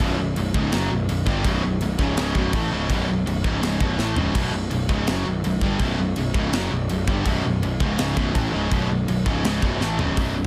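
This heavy metal excerpt opens at once with all four parts together: two picked, double-tracked electric guitars riffing over a B5 chord, a fuzz-driven bass and a modern studio drum kit, all at a straight 165 BPM in 4/4 with an aggressive, heavy mood. Up front, the high-gain distorted guitar cuts bright, while a crunchy overdriven guitar with a warmer tone sits in the background beneath it, both riffing from B1 to A3. The picked electric bass, heard direct and amped, growls low from B0 to A1 with a gritty overdriven fuzz that keeps it prominent in the mix. The acoustic drums sound polished and airy in a small room, with a punchy kick, a high-tuned snare, crashes, hi-hat and toms, and fills land at 4.0 seconds and again at 9.8 seconds. The crunchy guitar drops out at 10.2 seconds, leaving the rest to play on briefly before the cut at 10.5 seconds.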